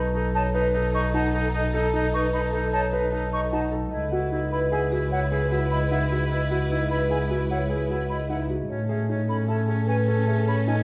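Minimalist classical pattern music in a steady, straight 6/4, this brief fragment of a longer piece feels propulsive and bright. A marimba played with medium mallets carries the melody with a smooth, dusky tone, while a vibrato-tinged oboe sings a second line beneath it. A lush, close-sounding violin section holds bowed, expressive chords, and a single bowed double bass sits up front with an even, rounded voice. An airy silver flute spins arpeggios high in the background, joined from 0.1 seconds by a mellow, intimate grand piano whose arpeggios carry audible action noise and a vintage character. The harmony moves from B7 to C#m9 and then Amaj7, all placed in a reverberant recital hall with a dark, cozy production.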